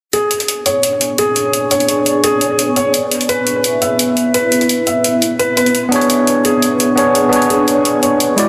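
A straight 4/4 pulse at 171 BPM drives this rolling, soulful liquid drum and bass excerpt in B dorian, tuned to A4 = 441 Hz and cut from a longer piece. From 0.1 seconds a compressed, sampler-style electronic hi-hat sits up front with a gritty edge, beside a felt-muted upright piano whose soft, intimate arpeggios run through a low-pass filter and dub echo. At 0.8 seconds a shimmering ambient pad enters, holding sustained chords with a slow attack and long release; its dark, ethereal sine unison carries an octave-up shimmer, granular movement, chorus, phaser and built-in reverb. An overdriven tine electric piano joins at 5.9 seconds, bright and amp-driven with delay, adding accompaniment up front. The harmony moves from Bm69 to Bsus4 and back, all within a moderate, lush hall reverb and a dense, heavily limited modern master.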